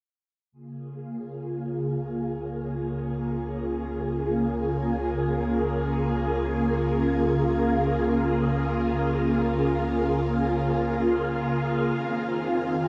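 Bathed in a wet shimmer reverb with a 6.4-second tail, this expansive, luminous fragment of sequencer-driven ambient space music drifts in free time in Db major: a bright, swirling, vintage sawtooth string machine, up front and thick with ensemble chorus and phaser, holds slow-blooming sustained chords from 0.7 seconds under a filter sweep, while a deep, round sine sub bass fades in beneath it from 0.5 seconds, the harmony moving from Db6 to Fm7 near 11.9 seconds.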